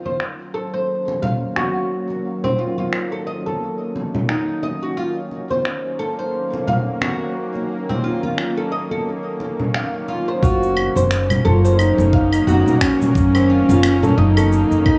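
Bathed in a lush hall reverb over small-room ambience, this earthy organic downtempo excerpt at 88 BPM with a swung sixteenth feel opens on Ebm9, as a nasal, bright, string-like drone with sidechain pumping and a deep, woody, plectrum-plucked oud in delayed arpeggios both move through filter sweeps above distant, ringing congas and low-passed electronic finger snaps, shaker and claves; then at 10.4 seconds the harmony turns to Gb6 as a mellow, scooped, distant duduk melody with vibrato joins, along with a knocking electronic kick and an up-front, thumpy pizzicato upright bass.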